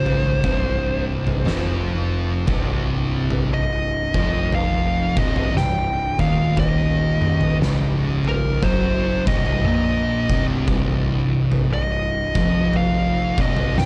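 A slow 59 BPM pulse in 4/4 with a swung eighth-note feel drags this heavy, sludgy stoner and doom metal excerpt forward in C minor, resting on a single C minor chord throughout its 13.9 seconds. An oversized, low-tuned acoustic drum kit enters at 0.1 seconds and sits up front, its boomy kick, fat snare and toms sounding saturated and gritty in a bright stone room. Beneath it, two thick fuzz guitars grind out the riff in the low register, one with a warm tone and the other darker, both picked and kept in the background alongside a round, overdriven picked bass that roams its lowest octave. Over this, a compressed fuzz lead guitar carries the melody between Bb4 and G5, its distorted tone trailed by digital delay. The production is dark with light reverb, giving the whole a murky, weighty character.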